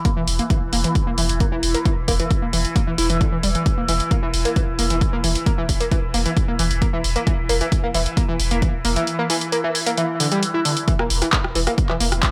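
A screaming, gritty overdriven synth lead carries the riff up front in this dark, driving peak-time techno, its distorted, guitar-like sawtooth tone bright with vibrato, tube saturation and tape echo, and pumping against the beat. Beneath it a resonant drone of moving overtones sweeps through chorus and phaser, while a round, mellow sine sub bass holds a deep low note with overdrive and a low-pass filter. A punchy, tape-warm kick drives the straight groove alongside an analog drum machine's handclaps, hi-hat and rim click, and the kick drops out from 9.1 to 10.9 seconds in this cut from a longer piece.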